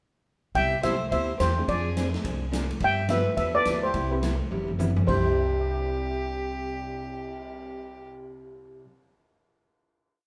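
At a brisk 212 BPM in 4/4 with a swung eighth-note feel, this cheerful, playful western swing piece in C major is a complete tune lasting under ten seconds. A big-band drum kit in a big room sets a backbeat and ride cymbal pattern with a boomy kick and a medium-tuned snare, then plays a fill at 4.5 seconds before the band settles on a final chord at 5.1 seconds. Pizzicato upright bass plays a thumpy, dark two-beat of roots and fifths with walk-ups, while a full-bodied dreadnought acoustic guitar keeps a picked four-to-the-bar rhythm through changes from Cmaj7 to Fm6 and G13. Up front, a mellow steel pan played with soft rubber sticks carries the shimmering, motif-based song phrases, and a single bowed fiddle with light vibrato traces a focused harmony line mostly in thirds. A jangly, detuned honky-tonk upright piano enters at 1.6 seconds and sits in the background with syncopated comping in close voicings, all captured live in one room with moderate reverb and a soft, rounded top end.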